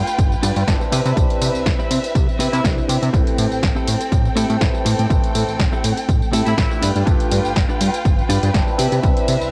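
A punchy analog drum machine and a prominent electronic kick drive this filtered disco house groove at 122 BPM in 4/4, with a light 16th-note swing, hi-hat, ride, snare and tambourine, all cycling through G7, Cmaj7 and Am7 in A minor for a funky, nostalgic mood. A fat, thick sawtooth bass with a moving filter sweep sits up front, while an overdriven auto-wah clav with phaser, a clean, fingered electric guitar riff tucked in the background, and a rich, bowed violin section with 12-bit sampler grit all pump against the kick. Brief bursts of a clear horn section with tape echo appear near 2.5 and 6.5 seconds, and the whole excerpt carries the hazy feel of a home cassette recording in a digital ambience.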